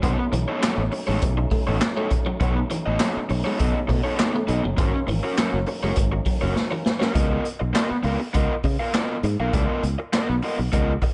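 A dark, slightly roomy production with light reverb and a rolled-off top frames this gritty, funky excerpt cut from a longer piece, moving at 101 BPM in a straight 4/4 and sitting in D-flat mixolydian. Up front, a raw garage drum kit brings a punchy kick, a medium-tuned snare, hi-hat and handclaps, all saturated and pumping in a small room, while a sustaining fretless electric bass plays direct and growly with a subtle chorus. An overdriven, picked garage guitar carries the accompaniment with a warm edge. In the background, a bright, twangy clean electric guitar plays a compressed, scooped riff through spring reverb, and a very quiet tonewheel organ holds fat sustained chords with vibrato, key click and a rotary speaker. The harmony moves from Cb9 to Ab9sus4, and a drum fill at 6.6 s leads into a new section at 7.2 s on Db13, where the organ and clean guitar have already dropped out at 7.1 s, leaving drums, bass and overdriven guitar to carry the groove.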